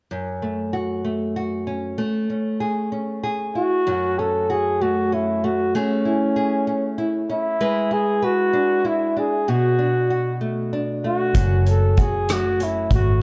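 A fingerpicked nylon-string guitar opens this heartfelt, swaying pop ballad in 6/8 at 64 BPM, its small, up-front tone carrying a slow progression that begins on F#m and moves through Amaj7, E7/G# and Bm7. At 3.6 seconds a breathy flugelhorn takes the melody in a jazz style, mellow and whispered, with a soft attack, light vibrato and a touch of delay that makes it sound intimate yet roomy. Near the close, at 11.3 seconds, a vintage foam-muted fingered electric bass arrives with a round, amped, punchy low end alongside a soft-mallet drum kit of hi-hat, rim click and a punchy kick, heard at a distance in a studio room. Light reverb and studio ambience give the dark production a gentle glow, with the instruments tuned slightly low to A4 = 438 Hz. The passage is cut from a longer piece, ending just as the full band settles onto F#m.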